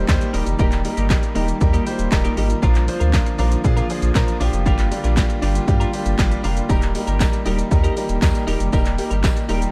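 Upbeat and euphoric, this dance-pop excerpt moves at 118 BPM in a straight 4/4, set in Eb major with chords moving from Eb to Bb, then Gm7 and back to Eb. A punchy analog drum machine sits up front with handclaps, hi-hat, kick, shaker and snare, its tape-warm tone re-recorded in a large room. Beneath it, a deep, full sub bass with an octave and a bright concert grand piano both pump with sidechain compression, the piano ringing open with long sustain. A clean, twangy twelve-string electric guitar plays a picked riff coloured by analog chorus, while a very quiet shimmering pad holds ethereal, detuned chords with an octave-up sheen and built-in reverb. A jingly tambourine slips in softly at 6.7 seconds, and the whole mix carries a dark production in a digital ambience.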